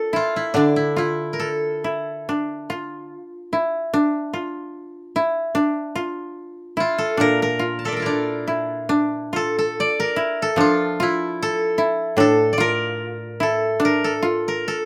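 Japanese traditional chamber music in D hirajoshi, meditative and austere, moves in a rubato 2/4 at around 69-76 BPM: a woody, up-front koto melody played with fingerpicks pauses from 3.3 to 6.8 seconds, a second warm koto holds a narrow middle line throughout, and a bright, dry koto accompaniment sits lower beneath them, the trio caught by close, detailed microphones with light reverb.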